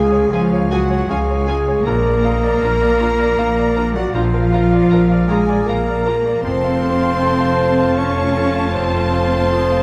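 A dark production set in a reverberant concert hall carries this moving, uplifting film-score passage in rubato 3/4 at 78 BPM, moving from Db through Bb to F. A soft-attack violin section sings the melody in the background from 0.3 seconds, over a lush, close violin section, an airy silver flute, a roomy oboe with light vibrato and a distant, bright clarinet, all playing a second line. A brilliant grand piano with deep bass and a very quiet viola section provide accompaniment, while a mellow, present French horn section holds chords, a faint harp rings out arpeggios, and a smooth cello section and a distant double bass section anchor the low end.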